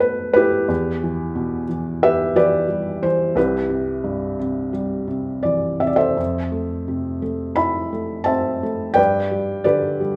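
A close, intimate recording places a felt-muted upright piano up front, its soft, mellow tone carrying audible action noise and short sustain into a moderate recital-hall reverb. This brief classical excerpt for solo piano is bittersweet and brooding, played with lyrical rubato over uneven beats in 4/4, ranging from low bass to the upper treble. The harmony moves from B7 to Em, then through C and Fmaj7 before arriving on G at 9.0 seconds.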